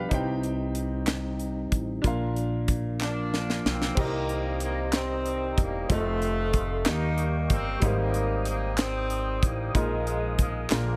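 Slow gospel in 6/8 at 62 BPM, hopeful and reverent, this excerpt moves from Cm through Bb to Cm7, F7, Eb7, Abmaj7 and a closing Bb7sus4, with a clear, smooth concert grand and a mellow, flute-like tonewheel organ on a slow rotary speaker holding the harmony over a woody pizzicato upright bass and a tight funk kit with a high-tuned snare. Crisp group handclaps join at 1.1 seconds, and at 3.0 seconds, as the drums play a fill, a roomy, jazz-style horn section takes the melody. A small room ambience surrounds the whole ensemble.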